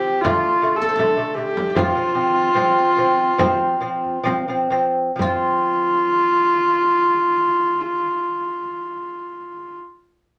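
Galloping and vast, this Mongolian folk excerpt slows over its first 5.2 seconds as an earthy, husky horsehead fiddle carries the melody up front with portamento and an airy bow, a delicate fingerpicked lute on double gut strings plays arpeggios also up front, a silvery, ringing guzheng adds a second line in the background, and a close, dry frame drum struck with hard hands plays from 0.2 to 5.6 seconds, inside a wet studio reverb as the harmony moves from D5 to F5.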